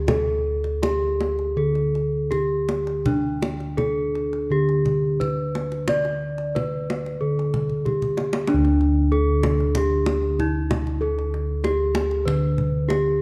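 Serene and shimmering, this short Javanese gamelan excerpt in straight 4/4 sets a ringing bronze metallophone up front on the melody, struck with wooden mallets, over round, beating bossed gongs that carry the bass with a boxy, small-room warmth. A tight, acoustic kendang played with hard hands keeps time beneath them and plays a fill from 7.7 to 8.5 seconds, carrying the music into a new section. Light reverb and a dark production give the sound a soft glow.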